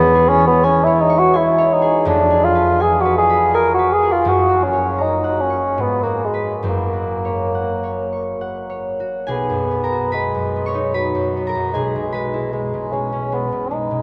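Serene and lyrical, this romantic classical passage for bassoon and harp, cut from a longer piece, moves in an unhurried rubato three-time at about 65-85 BPM in B major, with a mellow, vintage-toned bassoon singing the melody up front with light vibrato over a ringing, fingerpicked concert harp that spans deep bass to shimmering upper notes, the harmony settling onto B at 9.3 seconds, all bathed in the long, wet reverb of a vast, echoing cathedral.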